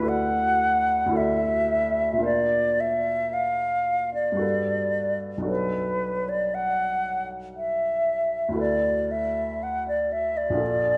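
A concert flute and a baby grand piano begin together, opening an impressionist classical duo that drifts in a slow, rubato 3/4 at around 51-61 BPM in D major, tuned to A4 = 444 Hz. The flute carries the melody between B4 and F#5 with a pure, soft-edged tone and gentle vibrato, sitting up front and singing expressively. Beneath it, the piano's accompaniment spans from Bb1 to D5 with a warm, open sound and long sustain, softer in level than the flute yet still close. Lush, colourful harmony moves from Dadd9 through Bbadd9, Gmaj9 and Bm9 before settling on D69 at 8.6 seconds. A wet recital hall reverb surrounds the pair, and the luminous, dreamy 11-second passage feels cut from a longer piece.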